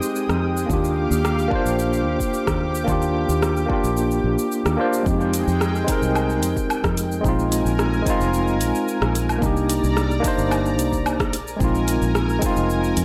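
Sunset chillout at 110 BPM in F dorian, smooth and warm, cut from a longer piece. A barky tine electric piano sits up front with tape echo over a lush, detuned unison pad with chorus, while the deep house kit's metallic hats, rim click, shaker and woodblock carry overdrive, a fingered electric bass, round and dark, enters at 0.3 seconds with tube saturation, and an overdriven electronic kick joins at 0.7 seconds. The sound is dry and gritty, and the chords move from Fm9 and Ebmaj9 into a second section at 5.1 seconds that returns to Fm9 and then moves through Bb7sus4, Cm9 and back to Bb7sus4.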